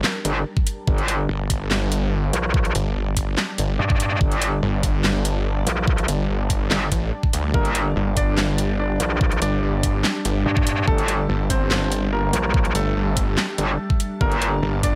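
This aggressive, menacing heavy wobble dubstep excerpt in G minor opens at 144 BPM in a half-time feel on a growling, detuned sawtooth bass, an up-front kit of huge snare, handclaps and metallic hats, and an evolving wavetable pad that morphs in the background over a Gmadd9 chord, treated with ensemble chorus, phaser and sidechain pumping. A bright, saturated FM wobble bass with chorus joins almost immediately, then a knocking electronic kick, all sitting in a dry, close mix. At 7.5 s a polished grand piano takes up the melody, roughened by vintage 12-bit sampler grit and dub echo.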